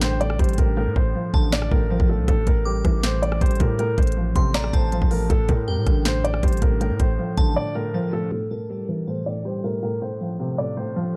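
Up-front trap drums with a knocking kick, sharp snare and crisp hats, whose hats drop out from 0.8 to 2.3 seconds, drive this hard-hitting, dark half-time trap excerpt at 159 BPM in A phrygian, alongside a heavy, aggressive distorted 808 bass, a glassy, chorus- and phaser-tinged FM synth bell with tape echo up high, a dark, mellow baby grand piano melody and a soft, intimate felt-muted upright piano accompaniment, until a break at 7.6 seconds leaves only the two pianos in the digital ambience.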